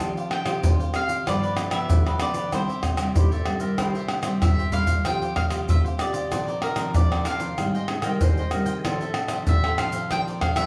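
A joyful, playful samba-choro groove in F major at 95 BPM opens with a round, double-strung mandolin melody over crisp, bright cavaquinho, fingerpicked classical nylon-string guitar with fresh strings and audible finger squeaks, and up-front hand percussion of egg shaker, tight surdo, pandeiro and tamborim. At 3.2 seconds a distant, roomy clarinet with tape echo enters as a warm second line and stays until 9.3 seconds, while a drum fill runs from 4.4 to 5.1 seconds. The chords move from Fsus2 through G7 and C to a turn on Bbadd9 and Abmaj7, all captured as a band playing live in one room with a wet studio reverb.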